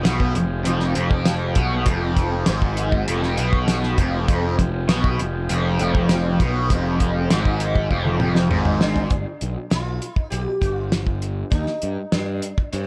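Set in a lightly reverberant small room, this dark, trippy psychedelic rock fragment pairs a bright, double-tracked guitar riff with overdrive and phaser, a fuzzed, overdriven picked bass and a cloth-damped, thuddy drum kit with a fat snare and tight kick, all three up front over buzzy vintage combo organ chords in the background; a drum fill at 7.9 seconds leads to a shimmering, buzzing sitar melody with tape echo entering at 8.8 seconds, and the guitar and organ stop at 9.1 seconds.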